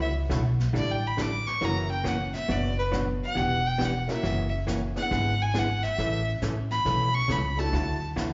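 Heard through a club's PA with club reverb and a dulled top end, this short, swinging and playful country western swing excerpt features a rich, focused bowed fiddle solo up front with slapback echo and light vibrato, over woody pizzicato upright bass, a dark, clean hollow-body jazz guitar with slapback echo, distant brushed drums with a punchy kick, and a jangly, detuned honky-tonk upright piano sitting in the background from 1.6 to 7.7 seconds.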